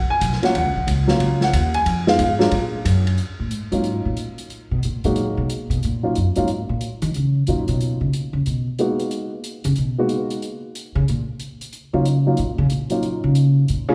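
Late-night and cool, this swinging jazz piano trio opens with a mellow, short-sustained baby grand soloing up front until 3.2 seconds, after which the woody, growly pizzicato upright bass takes its solo over an airy, polished acoustic drum kit with dark cymbals and a boomy kick, the trio ringing in a reverberant recital hall.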